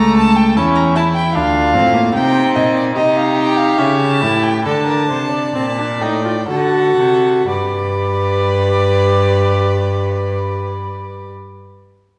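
Set in a straight triple metre, this contemplative, solemn baroque-style fugue for string quartet slows down from 1.0 to 7.5 seconds. It is heard as a cut from a longer piece. The first violin carries the melody high above a nasal second violin's line, while the viola fills in the accompaniment with light vibrato and the cello anchors the bass from up front. All four bowed players share a reedy, gut-string, period-style tone, with light vibrato on both violins. The harmony darkens through a diminished chord and a suspended dominant before resolving onto G at 7.5 seconds, where a new section begins. A wet recital-hall reverb places the quartet further back in the room, lending the lines a solemn, spacious glow.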